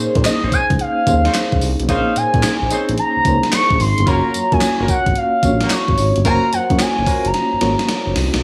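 Slick and punchy, this short new jack swing cut rides a swung sixteenth-note feel in 4/4, moving from Bbm11 to Gbmaj7 at 4.1 seconds. A gated 80s digital drum machine sits up front with a thumpy kick, a gated-reverb snare, handclaps, hi-hat and tambourine, its overdriven, sampler-style hits re-recorded in a small room. Underneath, a smooth synth bass blends sawtooth and triangle tones into a mellow, sustained low end, while an FM electric piano with tremolo adds full-bodied, decaying chords over a noise layer. The expressive portamento lead carries the melody in a warbling, vintage voice, its wave-folded sawtooth and sine tone thickened by chorus, vibrato and digital delay. A dark horn section adds quieter jazz-style stabs in octaves with light vibrato and its own delay, and a drum fill closes the passage from 7.3 seconds in a lightly reverberant space.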